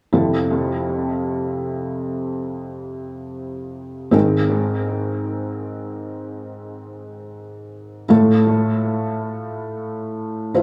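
A felt-muted upright piano sits up front with a soft, mellow, intimate tone and audible action noise, playing accompaniment from F2 to C5 through analog delay in this heartfelt, hopeful pop fragment at 60 BPM in a straight 4/4. The chords move from Fmaj7 to Abadd9 at 4.1 seconds and settle on Fmaj7/A at 8.1 seconds, keeping to F major across its roughly ten seconds. A moderate plate reverb and small room ambience give the echo-heavy mix a gentle halo.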